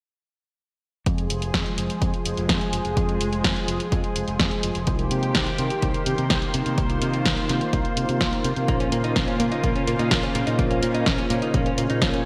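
A lush, detuned sawtooth unison pad with chorus sits up front, holding sustained chords in this nostalgic, bittersweet italo disco excerpt, over a bright fingered electric bass with tube saturation, a punchy overdriven electronic kick and a house kit of bright hi-hats and punchy snare, and at 8.7 s a clean, direct-recorded electric guitar adds arpeggios with subtle chorus and delay alongside round, dark synth brass stabs in the background, the whole mix bathed in hall reverb with bright 1980s-style digital production.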